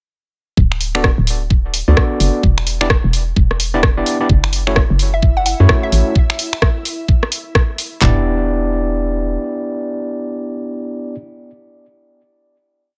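A knocking, hollow FM bass and a layered garage kit with four-on-the-floor kick and claps open this skippy, moody two-step garage piece, joined by a tape-warm analog drum machine's swung hats, snaps and rim clicks and by gritty, overdriven electric piano stabs with delay through Em7 and F#m7, while an ethereal pad with chorus and sidechain pumping sits in the background from 4.9 seconds, a bouncy square pluck adds short mellow phrases, and the electric piano rings on with the bass over a final Em7 from 8.0 seconds.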